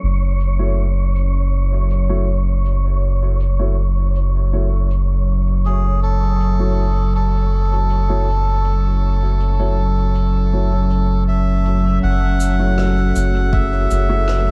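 A round, up-front dub sub bass anchors this hazy, meditative ambient dub fragment in F# minor at 80 BPM, beneath a warbling, detuned tape-like pad on an F#m7 chord under a filter sweep, an airy wind-like noise layer, distant cabasa and rim click with dub echo, and dark, woody upright piano stabs, before a reedy, breathy melodica takes the melody with dub echo from 5.7 s and an overdriven electronic kick briefly appears at 13.5 s, all in a small room ambience.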